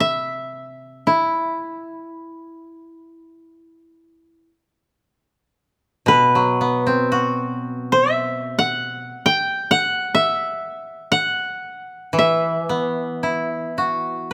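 This is Japanese traditional chamber music for two koto, in free time with a still, meditative mood. One koto carries the melody throughout, ranging from E4 to B5. A second koto supplies a lower accompaniment from B2 to F#4, sounding only in brief stretches: at the very start, again from 6.1 s, and once more from 12.1 s to the close. Both acoustic instruments are played with fingerpicks and sit up front, their tone woody and dry, with the melody a touch louder than the support. The opening passage returns at 5.4 s, so the music unfolds as a single idea heard twice. Close, detailed microphones capture the strings in a light reverb, in a short passage cut from a longer piece.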